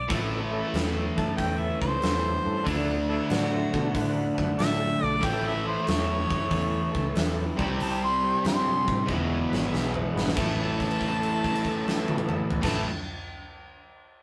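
Blues rock with a southern rock edge, this driving, gritty excerpt swings at 94 BPM in A mixolydian, led by a clear, smooth-topped harmonica singing a solo melody with light vibrato and scooped notes over a bright, double-tracked garage guitar riff and a dark, foam-muted picked bass with a round tone. A huge arena drum kit with a fat snare and punchy kick sits up front, while an overdriven tonewheel organ holds thick chords in the background through a slow rotary speaker and chorus vibrato. Drums and organ both fill from 9.1 to 10.4 seconds before a held note rings out, all captured in a rough rehearsal-room sound with tube saturation and moderate reverb.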